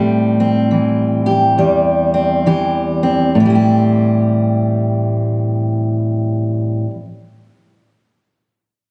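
Folk piece for solo fingerstyle acoustic guitar, intimate and reflective in mood, in A minor at a slow 66-71 BPM in 4/4 with a gentle swing on the eighth notes. A fingerpicked steel-string dreadnought plays alone throughout the 7.1 seconds, sitting up front with a warm, full-bodied tone that reaches from E2 up to G4. It opens on an Am7 chord, and the tempo slows down over the first 3.3 seconds before a second section takes over until 7.0 seconds. The sound has the character of a phone recording made in the room, with light club reverb and compression. This short passage is cut from a longer piece.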